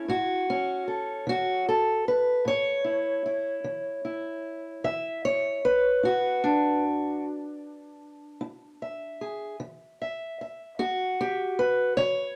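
A lone fingerpicked steel-string acoustic guitar carries this excerpt of acoustic country blues, sitting up front with a dark, boxy parlour tone. The mood is soulful and gritty, moving at a slow 50 BPM in a straight 12/8 in A major. The guitar covers a range from A2 up to E5, resting on an A chord before shifting to a thirdless E7 at 4.8 seconds. Moderate studio reverb gives the sound a sense of a single live room around the instrument. The passage runs to 12.4 seconds and is cut from a longer performance.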